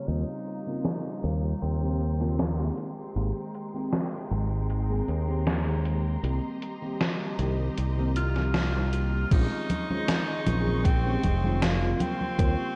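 An edgy, punchy tenor saxophone with scooped notes and tape echo drifts through this woozy, nostalgic vaporwave fragment, falling silent at 2.7 seconds and returning at 8.2, over a dreamy FM electric piano with a soft pad layer and lush chorus, a clear symphonic string section filtered and roughened with vintage 12-bit sampler grit under a filter sweep, a bright, growly fingered electric bass up front, and a gated 80s drum machine of congas, crash, hi-hat and snare, joined at 9.3 seconds by a thumpy electronic kick, all bathed in hall reverb and cassette-tape haze.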